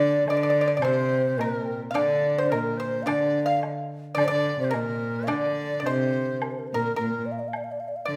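A mellow, hollow xiao carries the graceful, wistful melody in this brief excerpt of Chinese traditional chamber music with a rubato feel, joined by a bright, buzzing large dizi, a dry, percussive pipa and an intimate, up-front bowed cello on second lines, while a silvery, ringing guzheng accompanies in the background until 7.0 s and a close woodblock sounds from 0.3 s, all set in a recital hall reverb.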